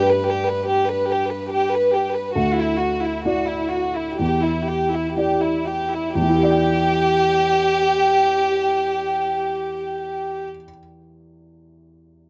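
A felt-muted upright piano and a chamber violin section begin together in this melancholic, longing neoclassical fragment in E minor, rubato at 60-74 BPM and slowing over the first 6.2 seconds, with the bowed violins carrying a soft-attacked sul tasto melody with light vibrato and a slapback echo over the piano's dark, mellow accompaniment through G, Dadd9 and Em7, both parts up front and intimate in light outdoor reverb, until the violins stop at 10.4 seconds and leave the piano alone until 12.3 seconds.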